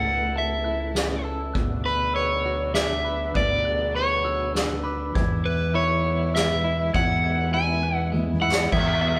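Hopeful and euphoric, this post-rock passage moves at 100 BPM in 3/4 through A/C#, Bmadd9/D and Eadd9, with a dark, overdriven semi-hollow guitar carrying the melody up front while a clean, scooped electric guitar with tremolo and a mellow glockenspiel played with rubber mallets spin arpeggios beneath it. A growling, overdriven fingered bass anchors the low end, and a very quiet, lush string section holds bowed chords with vibrato. A distant soft-mallet drum kit with a punchy kick comes in at 0.1 seconds and plays a fill from 8.1 to 8.7 seconds, the band sounding live together in a stone room of moderate reverb.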